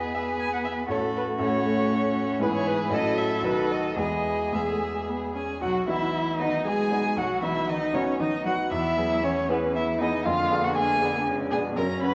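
In a three-beat metre with a flexible, rubato feel, this quick classical-period movement for piano quintet moves along in a lively, graceful mood. A single bowed violin carries the melody up front from 0.1 s, its tone smooth and even with vibrato, though it sits at a slight distance. A second violin, equally rich and distant, and a focused, vibrato-laden cello share a second line beneath it. Deeper in the background, a close, expressive viola adds accompaniment with soft attacks and portamento, alongside a bright, brilliant baby grand piano that stands up front. The opening section gives way to a second one at 5.6 s, and the passage is cut from a longer piece. A moderate scoring-stage reverb surrounds the ensemble, while worn cassette tape lends a warbling pitch drift and a dulled top end.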